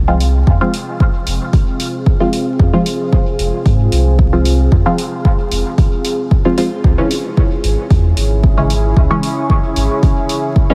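A straight 4/4 pulse is carried by a deep electronic kick drum sitting up front, with a quieter electronic hi-hat above it, both layered, tape-colored and re-recorded in a small room. This cavernous, meditative dub techno cut, taken from a longer piece, rests on a clean, smooth sine sub bass with a fast attack, given tube saturation and sidechain pumping. Behind it, a moody ambient pad of detuned sawtooth unison voices and a sub octave fades in slowly, sustains with a long release, and breathes through chorus, its own built-in reverb and pumping. Muted, detuned sawtooth chord stabs pluck with a short decay, colored by chorus, phaser, dub echo and pumping, while a filter sweeps over them from start to finish. The harmony moves from F minor to D-flat minor at 6.8 seconds, and a light reverb with a layer of vinyl crackle surrounds the whole texture.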